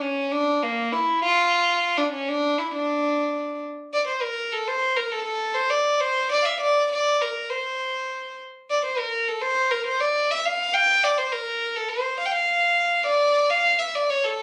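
A lone bowed violin carries this short klezmer passage, played sul tasto by a single player with a soft attack, a pure, floating tone and a smooth top. It sits up front and alone for the whole 14.4 seconds, ranging from Bb3 to G5 in D harmonic minor. The mood is soulful yet festive, set in a straight 2/4 at 102 BPM, and the tempo speeds up from start to finish. The passage moves through three sections, with the middle one running from 3.9 to 13.3 seconds before a brief closing phrase. The sound suggests a phone recording made in a club, with moderate reverb and some compression, and it is cut from a longer piece.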